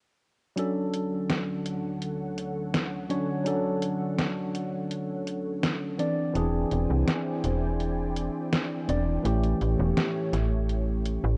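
A dark, cassette-tape haze with light reverb frames this dreamy, nostalgic vaporwave fragment, which is cut from a longer piece and moves at a relaxed 83 BPM in 4/4 in D major. From 0.6 seconds, a bright tine electric piano carries the accompaniment up front, its clean tone touched by subtle chorus and analog delay. Alongside it, a detuned 8-bit digital drum machine supplies hi-hat and a medium-tuned snare with an electronic, sampler-style, tape-softened character. From 1.1 seconds, a lush unison pad of detuned sawtooth and square waves with a sub octave holds sustained chords, its slow attack and long release colored by chorus and phaser. At 6.4 seconds a slap-like FM bass arrives in the low register with a snappy, metallic attack, while the harmony passes from Dmaj7 to E7alt and then A7.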